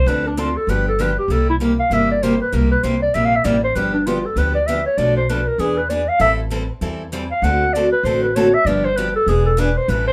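A mellow, vintage-toned clarinet opens this swinging, playful cut of jazz manouche at 196 BPM in G mixolydian, soloing up front with vibrato and a soft-attack subtone over a bright picked archtop guitar and a woody, thumpy pizzicato upright bass on gut strings, the trio set in a wet studio reverb as the chords move from Dm7 and G7 through Bm7b5, E7 and Am7.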